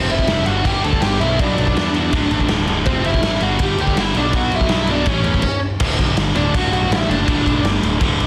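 A raw garage drum kit sits up front with a punchy kick, a medium-tuned snare and a rolled-off top, driving this rowdy, rebellious punk rock excerpt in D major at 163 BPM in a straight 4/4. A bright, scooped, double-tracked distorted electric guitar picks its way through a riff over G5, Bm, D5 and F chords, while a growly fuzz picked electric bass underpins it and a dark, bluesy overdriven lead guitar with delay carries the melody until 7.6 seconds. After a brief stop from 5.4 to 5.8 seconds the band crashes into a new section on an A-to-D change, all in a dry, dense, heavily limited mix.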